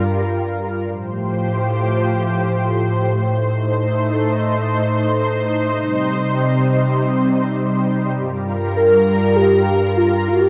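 This moody, nocturnal synthwave fragment, cut from a longer piece, floats in free time in G minor, tuned slightly below standard pitch. An analog string pad carries it from the start, holding silky, detuned sawtooth chords with a slow attack, vibrato and an ensemble chorus, sitting up front in the mix. The harmony drifts from Gm7 through Fadd9/A, Adim and Cm before settling back on Gm7 at 8.2 seconds. At 8.8 seconds a velvety synth lead enters with a brief melody between F4 and Bb4, its detuned unison tone mellow and smooth, coloured by chorus and a digital delay. A moderate plate reverb with a long tail wraps the whole passage in a dark, spacious atmosphere.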